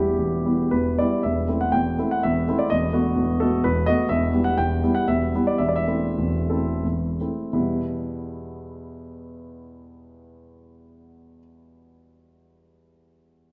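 Capricious and wistful, this short excerpt from a longer romantic piece is a triple-time dance in E minor, shaped by dotted rhythms and a free, rubato feel. The tempo drifts between 79 and 137 BPM, and the music slows noticeably from 3.4 to 7.5 seconds before settling back onto the home chord. A warm grand piano carries everything on its own, ranging from a deep E1 up to G5 with a polished, up-front presence. The harmony moves from E minor through A minor and B7 over an E in the bass, then returns to E minor and A minor before closing on E minor. A wet recital hall reverb gives the piano a lingering, spacious bloom around its close, present tone.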